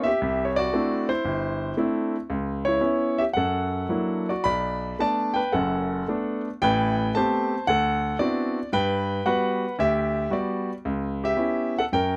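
A clear grand piano sits up front in a light reverb, its tone natural and intimate, with the mechanical noise of the action audible beneath the notes. This is a short excerpt of relaxed, warm solo jazz in G major at 113 BPM in 4/4, the eighth notes swung while the phrasing stretches freely in a rubato manner. The piano carries everything alone across the full 12.2 seconds, ranging from a low F#1 up to B5. Its harmony moves through C69, C#m7, F#7alt and Bm7, then Am9 and D13, settling on Gmaj7 before turning to C#m7b5 at 10.8 seconds. Cut from a longer performance, the passage feels like an unhurried, close-up moment at the keyboard.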